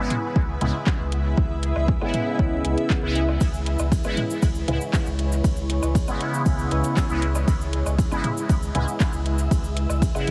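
This dub techno excerpt moves in a straight 4/4 pulse, with an overdriven electronic kick sitting up front from 0.4 seconds and a deep house kit of handclaps, metallic hi-hats and ride cymbal trailing dub echo behind it. Electronic toms and woodblock sit in the background, pumping against the kick, and a grainy, close and dry cabasa joins at 3.4 seconds. Underneath, a round sine sub bass holds the low end while a juicy, detuned sawtooth polysynth fires resonant, filter-swept stabs through chorus, phaser and dub echo. Alongside these, a cloudy granular pad sustains a single minor seventh chord, a bubbling stepped-filter texture drifts far back in the mix, and a muted, very quiet filtered chord stab plucks and decays. The mood is hypnotic and cavernous, yet the whole is squeezed into a heavily compressed, radio-like sound dusted with vinyl crackle.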